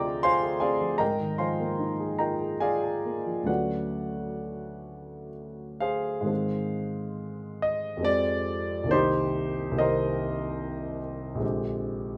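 A grand piano, warm and up front, plays alone in a luminous, serene impressionist classical piece in 3/4. The rubato feel sits around 61-80 BPM in A-flat lydian, with rich harmonies moving from Fm7/D and Dmaj7 into a new passage at 6.3 s that drifts through Ab6, Fmadd9 and Cm7 before settling on Bb13 at 11.4 s. The piano's present tone spans from the deep bass to the high treble, set in a light reverb, in this brief passage cut from a longer work.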